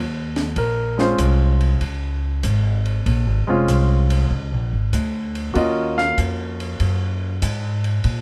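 Dark, lightly reverberant production frames this cool, moody jazz piano trio excerpt in a medium swing, where a woody, growly pizzicato upright bass opens alone at 0.0 seconds, a dry compact cocktail kit with dark cymbals, a high-tuned snare and a punchy kick slips in softly at 0.4 seconds, and a natural-toned baby grand sits up front carrying the melody from 0.6 seconds over minor-seventh harmony.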